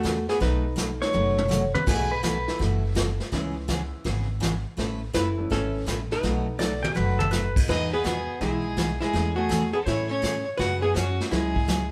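A bright, twangy pedal steel guitar sits up front in this cheerful, playful western swing clip, slipping in with fingerpicked slide phrases and volume swells as a second line around the archtop guitar's melody. That hollow-body archtop, clean, dark and close, carries the tune over a swung 4/4 groove, while a full-bodied, picked dreadnought acoustic guitar and a worn, slightly detuned upright piano fill in the accompaniment, the piano tucked in the background until 6.8 seconds. Pizzicato upright bass with a woody tone anchors the low end, and a vintage brush kit with dark cymbals and a punchy kick drives the swing, adding drum fills alongside the pedal steel's phrases. At 7.7 seconds a second section opens and an earthy, distant bowed fiddle takes over the second line. Light reverb places the players together in one room, giving the cut the natural feel of a band playing live.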